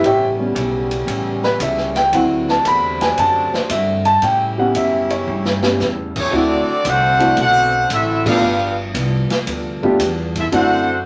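Swinging 4/4 big-band jazz, energetic and joyful, opens with an intimate, up-front concert grand piano solo over dark saxophone section chords, a woody pizzicato upright bass, a roomy drum kit with a boomy kick and a picked hollow-body electric guitar in the background, until a drum fill at 5.3 s hands the tune to a clear trumpet section melody and a trombone section second line with light vibrato from 6.2 s, capped by a band accent at 8.2 s in a wet club reverb.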